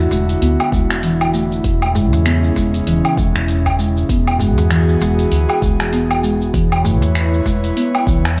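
A moderate concert-hall reverb gives this short cut from a longer organic downtempo piece an earthy, spacious glow, moving at 98 BPM in 4/4 with a swung sixteenth feel in E mixolydian over chords from Dadd9/E through C#m/E and E7 to a rootless A/E. An airy, breathy pad holds bright sustained chords with chorus and sidechain pumping, a dark, round fretless electric bass adds tube-saturated depth that also pumps, and a woody marimba with soft mallets plays rustic arpeggios through tape echo and a low-pass filter sweep. A tape-warm deep house kit of finger snaps, hi-hat, shaker and woodblock and a very quiet, close, dry clay darbuka carry the rhythm until the darbuka stops at 7.6 s, while a deep, layered electronic kick drum enters at 0.7 s.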